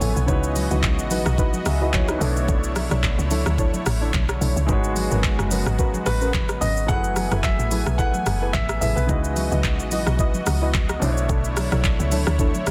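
A lightly swung sixteenth-note groove drives this soulful, hypnotic amapiano excerpt, with an up-front electronic R&B kit of knocking kick, smooth hi-hat, handclaps, rim click and shaker, punchy woody log drum bass with a fast attack and decaying tail, and thick-skinned congas sitting in the background. A polished grand piano accompaniment, a lush detuned pad pumping with sidechain and chorus, and dark, soft chord stabs with chorus and delay move through C#m11, Bm11, G#m11 and F#m11. A clear baby grand piano melody with short sustain and digital delay appears at the start and again from 6.1 to 9.5 seconds, all under light reverb and a dense, heavily limited modern master.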